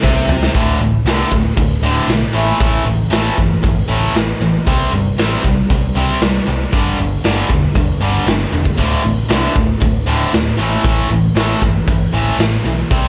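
A drum fill from the raw garage kit opens this energetic, swaggering hard rock excerpt, its punchy kick, medium-tuned snare, hi-hat and toms sounding saturated and gritty up front in a pumping stone room. Alongside it, a bright, overdriven electric guitar riff and a tighter distorted guitar tucked into the background ride a straight 4/4 groove through the D5, A5, C5 and G5 power chords, anchored by a growly, amped picked bass. A light reverb gives the whole thing a little space as the band drives on until the cut at 13.1 seconds.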